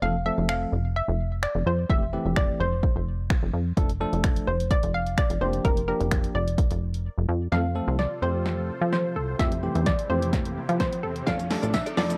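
A straight 4/4 pulse at 128 BPM drives this upbeat, carefree dance-pop cut in F major, where a punchy, tape-warm analog drum machine with finger snaps, shaker and hi-hat joins at 0.5 seconds beneath a hollow, bouncy square-wave pluck melody, a bell-like tine electric piano and a funky, up-front analog bass, both of which pump with sidechain. After a brief silent gap, a build-up begins at 7.5 seconds with a drum fill and filter sweep as a lush supersaw pad with phaser enters in the background, and a very quiet riser follows at 10 seconds. Near the end, a twangy, clean electric guitar riff with ensemble chorus and a faint, jingly tambourine slip in at 11.3 seconds, all set in a digital ambience.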